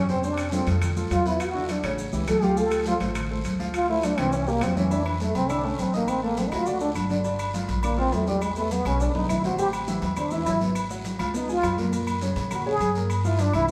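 A wet, roomy live-band sound frames this fiery, sophisticated Afro-Cuban jazz excerpt in D minor at 205 BPM, where an up-front, plunger-muted trombone solos with a clear wah-wah voice and light vibrato over a dark, intimate baby grand piano with audible action noise, a growly pizzicato upright bass, ringing background congas, metal-shelled timbales and agogo bells, raspy guiro, grainy maracas and woody claves, with a brief drum fill at 9.2 seconds.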